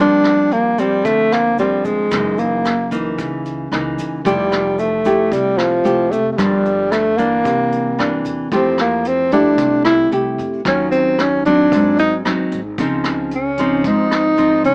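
Bossa nova at 112 BPM in a relaxed, romantic mood, this short cut features a dark, up-front tenor saxophone with light vibrato, subtone and scooped notes, moving into a solo at 8.5 s over changes from Gm7 through Fmaj9 to Dbmaj9. A fingerpicked nylon-string guitar sits close alongside it, warm and classical with audible finger squeak, while a woody, thumpy pizzicato upright bass with gut strings stays in the background. Brushes on a vintage kit bring a tight kick, hi-hat and rim clicks with a rolled-off top, a grainy tube shaker adds very quiet shimmer until 8.5 s, and light reverb with a small-speaker character frames the whole.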